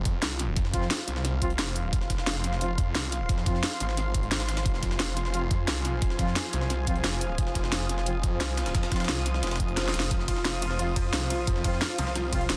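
A snarling, detuned saw bass growls up front from the start of this tense, dark technical drum and bass cut in F minor at 176 BPM, joined almost at once by a knocking electronic kick, an overdriven kit with cracking snare and bright hats, and a very quiet, gritty, pitched-up jungle-style sampled kit, while a moody, chorused analog pad, a blurred granular cloud pad, and smooth-topped brass stabs with delay sit in the background, all within a densely limited mix with light digital reverb, until a drum fill at 9.8 s leads to a soft, felt-muted upright piano arpeggiating with audible action noise from 10.1 s.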